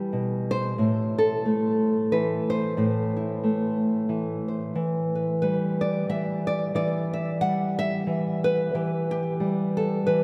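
A dark, small-sounding nylon-string guitar, fingerpicked up front with audible finger squeak and a slapback echo, plays a reflective, melancholic solo folk excerpt in A minor at 90 BPM in a lightly swung 3/4, moving from Em to Am at 0.8 seconds and to Em7 at 4.8 seconds, all suspended in the long, wet reverb of a vast, echoing cathedral-like space.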